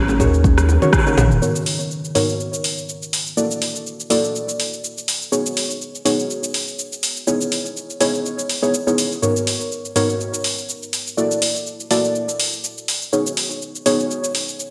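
A swung 4/4 afro house groove opens this hypnotic fragment with woody kalimba arpeggios, round sine sub bass, a deep electronic kick and very quiet bongos and congas in a live room, all gone by 1.4 seconds after a drum fill, leaving dark, nasal chord stabs with chorus, delay and sidechain pumping over an up-front afro-pop kit of metallic hats, rim clicks, shaker and toms through to 14.7 seconds, set in a bright 1980s-style digital sheen with plate reverb.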